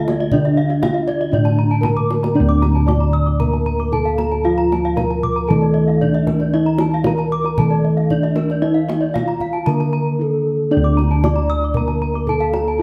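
Hypnotic and brilliant, this excerpt of Balinese gamelan moves at 115 BPM in a straight 4/4 in D pelog. A mellow bronze metallophone struck with padded disc mallets carries the melody over a dry, close-miked metallophone accompaniment in the background and round, up-front bossed gongs in the bass, while two more metallophones spin arpeggios above, one bright under horn mallets, the other under wooden mallets, their paired tuning giving shimmering beats. A tight kendang played with hard hands adds a drum fill from 2.0 to 2.4 seconds that leads into a new section, all set in a moderate recital hall reverb within a dark production.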